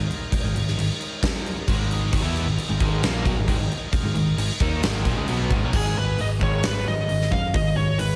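A straight 4/4 pulse from a huge arena drum kit, with bright cymbals, a fat snare and a punchy kick up front, powers this heavy, aggressive hard rock excerpt, anchored by a dark, round picked electric bass. Two overdriven semi-hollow guitars play riffs in the background, the second entering at 2.1 seconds with spring reverb. They sit alongside a very quiet, double-tracked distorted guitar and a reedy tonewheel organ holding sustained chords through its slow rotary speaker with audible key click. Both of these drop out at 5.7 seconds, and at 5.8 seconds a high-gain lead guitar takes an up-front melody colored by distortion and slapback echo.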